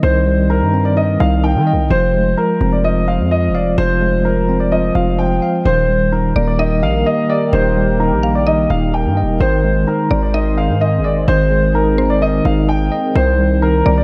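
A dreamy, reverb-soaked mix opens this melancholic, dark half-time hip hop excerpt at 128 BPM, where a dark, mellow concert grand piano carries the melody with analog chorus over a clean, tremolo-laden tine electric piano and an aggressive, saturated 808-style bass up front, while from 6.4 seconds a deep, detuned analog pad with slow-attack sustained chords and a woody, round FM mallet-like pluck with chorus and delay join in the background, moving through Cm, Fm, Eb and Ab.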